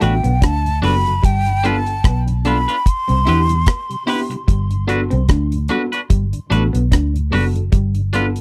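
A breathy, tongued concert flute with vibrato and tape echo carries the sweet, romantic melody up front until 4.1 seconds, over this short, dry, close 1970s-style lovers rock reggae excerpt in G major at a relaxed 74 BPM with a gentle swing, moving from Gmaj7 through G7 to Cmaj7. A deep, tight drum kit of kick, hi-hat and rim click sits forward with a round, punchy, foam-muted fingered bass, while a bright, compressed twangy guitar plays clean stabs. Beneath them, a slightly broken-up guitar through a small old amp plays a dark riff, a worn, slightly out-of-tune tine electric piano with slapback echo adds accompaniment, and a very quiet, flute-like tonewheel organ with chorus vibrato and key click fills in softly.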